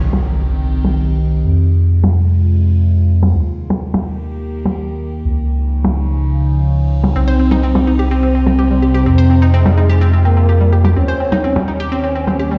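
Hypnotic and dramatic, this melodic techno passage sets a round, deep analog bass up front beneath an evolving wavetable pad with phaser and muffled, tape-warm percussion blips, while a background impact opens it, before a nasal, vibrato-tinged synth lead carrying tape echo and a bright, ringing analog pluck with digital delay join at 7.2 seconds, all heard through a stone-room reverb as if played on a big sound system in a bare space.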